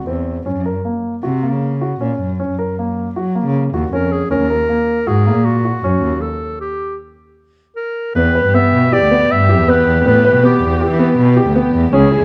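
A clear, classical-style solo clarinet carries the melody from 3.9 seconds in this restless, pensive piece of contemporary chamber music, moving at 157 BPM in an uneven 5/4. Beneath it, an intimate cello plays the bass line with soft-attacked, airy sul tasto bowing and light vibrato, while a concert grand piano adds arpeggios with a deep low end and short sustain. After a break in the harmony at 6.2 seconds, a rich, smooth symphonic string section enters at 8.2 seconds with distant sustained chords, all within a dark production and a moderate recital-hall reverb in this excerpt from a longer work.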